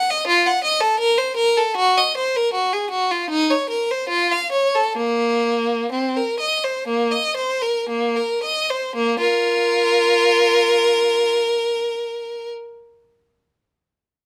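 Solemn and grave, this short excerpt from a baroque-style suite movement for unaccompanied violin unfolds in Bb minor at a flexible, rubato pace between 54 and 86 BPM, slowing through its opening nine seconds. A single bowed violin, close and up front with a focused, clear tone and vibrato, ranges from Bb3 up to Gb5 over chords moving from F and Gb to a suspended Bb harmony. Light reverb surrounds the player, and a new section begins at 9.0 seconds before the violin stops at 12.5 seconds.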